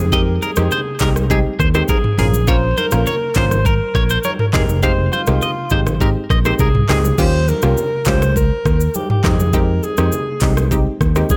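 A distant, roomy alto saxophone carries the melody with vibrato and delay through this mellow, hypnotic afrobeats excerpt in F minor. Beneath it, a hollow, bouncy square-wave pluck with chorus and ring modulation supplies detuned, fast-attack, decaying accompaniment, while a clean, twangy electric guitar plays a bright, compressed riff with delay until 7.0 seconds. The fingered electric bass sits dark and round at the low end, and an electronic afro-pop kit, up front with a knocking kick and metallic hats, drives the straight 102 BPM groove with handclaps, rim clicks, shaker, toms and crash cymbal. Very quiet congas, ringing and soft-handed, join at 0.4 seconds. The harmony moves from Fm7 to Bbm and back, then touches Eb7 before returning to Fm7, in a dry mix with little reverb.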